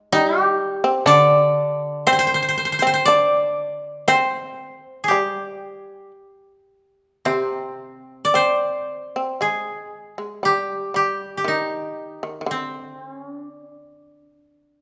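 Austere and calm, this short cut from a longer piece of Japanese chamber music moves in a slow, rubato 4/4 around 54-62 BPM in the G miyako bushi mode, with a bright, woody koto carrying the melody up front across the full 14.8 seconds while a buzzing, percussive shamisen shapes a powerful second line beneath it, a second koto adds a brief low accompaniment between 1.1 and 4.1 seconds, and a recital hall's reverb lends the plucked strings a lingering resonance.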